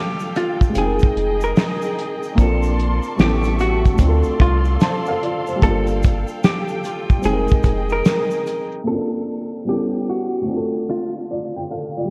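Soaked in a lush hall reverb with a cassette-tape haze and a low-pass filter over the whole mix, this short lo-fi hip hop excerpt feels nostalgic and cosy at a relaxed 74 BPM with a swung sixteenth-note feel. A dark, clean hollow-body jazz guitar carries the melody through a low-pass filter and tape echo, set over a felt-muted upright piano whose mellow, intimate tone and audible action noise sit up front. A clear, bowed string section adds smooth sustained chords with vibrato until about 8.8 seconds, while a grainy egg shaker ticks distantly in the background. The cloth-damped drum kit is thuddy, with a fat snare, a tight kick and hi-hat, and a round, deep dub sub bass sits up front beneath it, the rhythm section dropping out by about 9 seconds. The harmony drifts through chords such as Gm9, Fm11, Bbmaj9, A7 and Dm7, and from 8.9 seconds a filter sweep carries the guitar and piano into a sparser closing section.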